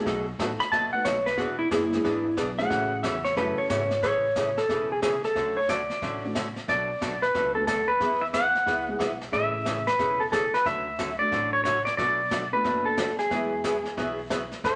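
Playful and cheerful, this western swing excerpt bounces along in a swung 4/4 feel. It opens with a bright, twangy slide solo on clean lap steel guitar, up front in the mix, before a second lap steel takes over the melody at 4.0 seconds, played with fingerpicks, compressed and shaped by volume swells. Underneath, a dark, hollow-body archtop guitar picks out compressed accompaniment, while a mellow, boxy upright piano sits in the background, dropping out briefly before returning at 6.2 seconds. A woody, thumpy pizzicato upright bass and a vintage brush kit with a tight kick and a rolled-off top keep the small-room groove going, and a worn, slightly out-of-tune electric piano with tremolo appears for an instant at the very end. The harmony moves through jazzy seventh and sixth chords, and a wet studio reverb lends the mix a dusky sheen.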